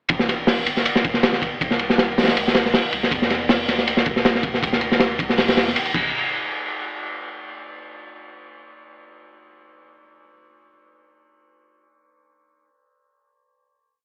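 A heavily chopped, crunchy breakbeat kit sits up front in this short, frenetic drum and bass and jungle piece at 159 BPM, its tight kick, medium-tuned snare and dark cymbals sounding saturated and gritty with a rolled-off top. Underneath, a soft, round dub sub bass with tube saturation holds long gliding notes in the background, and both parts drive a single drop from 0.1 s before a final hit at 6.1 s. Light reverb and a dry cassette-tape and AM-radio character give the whole thing a nostalgic, gritty feel.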